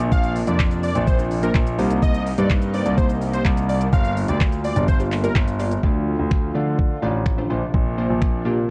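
Confident yet bittersweet, this dance-pop excerpt moves at 126 BPM in a straight 4/4, built on a smooth R&B drum kit of knocking kick, finger snaps, handclaps, silky hi-hat and shaker, roughened with vintage 12-bit sampler grit, while a concert grand piano carries the bass line with deep, intimate tone and audible action noise. Glassy, detuned digital keys add accompaniment and a lush, airy unison pad sits in the background, both chorused and sidechain-pumping, with a grainy egg shaker far off in a large room until 5.8 s. A thick, bold sawtooth lead with vibrato and analog delay sings the melody until 5.3 s, and the dry mix wears a warbling, cassette-like pitch drift as the chords shift from Bbadd9 through Cm7 and Gm7 to Dm.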